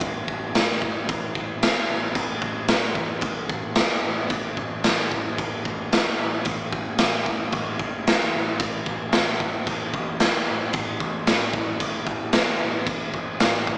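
Menacing and raw, this garage rock fragment is cut from a longer piece and runs in a straight 4/4 feel, tuned to A4 = 435 Hz. A picked electric bass, dark and overdriven with a round, punchy growl, stays low between A1 and E2 for the full 13.8 seconds. The acoustic drum kit sits up front and louder than the bass, its punchy kick, medium-tuned snare and crash cymbal sounding gritty and saturated. The kit carries the bright ring of a stone room that pumps audibly around the hits. With little reverb and a small-speaker character, it sounds like a band playing live together in one room, all within a single section.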